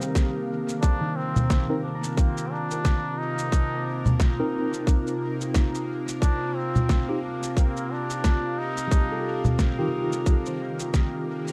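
A dark, warm production with light reverb gives this spacious, meditative ambient dub a soft glow. It moves at 89 BPM in 4/4 with a 16th-note swing in C dorian, and the harmony shifts from Cm7 to Ebadd9/C at 6.2 seconds. A warbling, nostalgic tape-like pad holds sustained chords with chorus and a long release, while a mellow, thumb-plucked concert harp rings out arpeggios and a worn, slightly out-of-tune tine electric piano adds stabs with medium tremolo, both sitting in the background under dub echo. Up front, an overdriven electronic kick drum with a tight punch anchors compressed, pitched-down electronic shaker, fat snare and congas, which carry their own dub echo. A bubbling stepped-filter texture with a bright, resonant, detuned edge drifts quietly beneath. From 0.8 to 9.6 seconds a trombone with a straight mute plays a nasal, brilliant solo melody in a classical style with light vibrato, in this excerpt from a longer piece.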